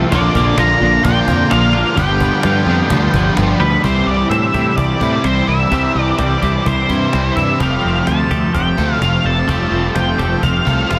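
A straight 4/4 pulse at 128 BPM drives this hazy, wistful shoegaze and dream pop rock fragment, moving from Bb and G7 into C major at 3.8 s and on to Fadd9. An up-front, overdriven semi-hollow guitar with analog chorus and a twangy, scooped electric guitar through reverse reverb carry the riff, while a bright twelve-string electric guitar with ensemble chorus and tape echo arpeggiates in the background, over a punchy, fuzzed-out picked bass and a woody, close and dry cajon. A dark octave-fuzz lead guitar with distortion and tape echo sings the melody up high from 0.1 s, all wrapped in digital ambience and a dense, heavily limited modern master.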